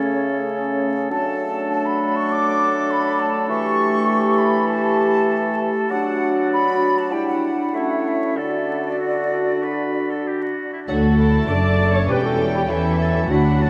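This lively, cheerful excerpt from a quick classical-period symphony movement in D major, at 99 BPM in a rubato 4/4, opens with the winds: a clear, distant oboe and a mellow clarinet in the background carry second lines, an airy flute group with crisp attack sits above until 10.2 s, a bassoon accompanies beneath, and a present French horn section holds sustained chords. At 10.9 s the string sections arrive, bowed sul tasto, with violins taking a light-vibrato melody over a background second violin line, dark, woody violas filling in, and cellos and double basses supplying a soft-attack bass. A vast, echoing cathedral reverb and vinyl crackle surround the orchestra.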